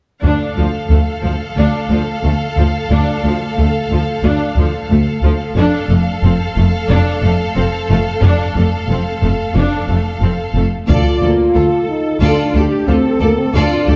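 A straight 4/4 pulse at 90 BPM carries this dramatic, epic orchestral film-score passage in D minor, cut from a longer piece. From the start a lush string body plays together: a smooth, bowed violin section carries the melody over a clear, intense second violin line and a viola section that fills in the accompaniment, all with vibrato. Cellos and double basses hold the low end with an even, rich tone that sits distant in the hall, while the harmony moves from D minor to F6. At 10.9 seconds the music shifts back to D minor as a mellow French horn section enters up front with sustained chords, and a heavy-sticked taiko ensemble with a vintage, band-limited sound strikes until 12.2 seconds. A wet scoring-stage reverb gives the whole orchestra a spacious, cinematic glow through to 14.0 seconds.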